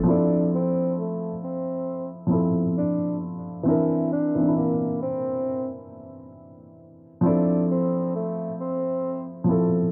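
Lo-fi hip hop with a nostalgic, mellow mood, this brief excerpt moves at an unhurried pace in four, with a swung sixteenth-note feel. A felt-muted upright piano carries the accompaniment from the start to 9.9 seconds, its dark, intimate tone shaped by thick felt and a short sustain. A clear tenor saxophone enters at 0.1 seconds to carry the solo melody in a jazz style, close-miked with a soft attack and vibrato. Both instruments sit up front with a cassette tape character, while the recording as a whole has the feel of a home cassette, with vinyl crackle, a low-pass filter and a moderate studio reverb. The harmony rests on Fmaj7, shifts to C7/E, and returns to Fmaj7.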